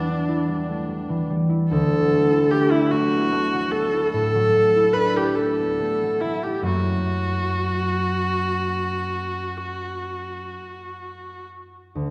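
A single bowed viola, rich and focused with vibrato, carries the melody up front in this dreamy, pastoral impressionist classical excerpt, moving freely in a rubato 12/8 over chords that pass from Em7 to Dadd9 and on to F#. Beside it, a concert harp plays a ringing, thumb-plucked accompaniment with a warm acoustic tone, sounding on alone for a moment after the viola stops at 11.5 seconds. A lush concert hall reverb surrounds the duo.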